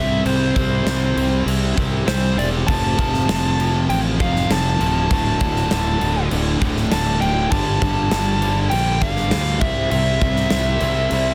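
A nasal lead guitar with a parked wah carries the overdriven melody from the start, over a growly, fuzzed fingered bass that sits up front and three picked rhythm guitars: a tight distorted one in the background, plus a cranked stack guitar and a double-tracked overdriven guitar kept very quiet, all playing the riff. A big acoustic rock kit, with a punchy clipped kick, medium-tuned snare and bright crashes, enters at 0.3 seconds and drives this aggressive hard rock passage at 99 BPM in 4/4 through C5, F, D5, Gm and C. The small room ambience and dense, heavily limited modern master frame this excerpt, which is cut from a longer piece.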